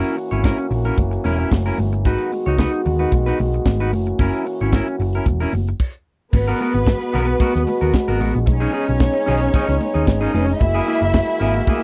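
A dry, close 1970s-style studio sound frames this glamorous, celebratory disco excerpt at 112 BPM, led by a tight funk drum kit up front with bright cymbals and a high-tuned snare, alongside a round, hollow-body picked electric bass. A clean electric guitar with subtle chorus plays accompaniment while a French horn section holds warm sustained chords with light vibrato, and a grainy tube shaker and hard-handed, high-tuned congas sit in the background. After a brief stop from 5.8 to 6.3 seconds, a dark, woody string section enters with a lush bowed second line, played sul tasto with vibrato.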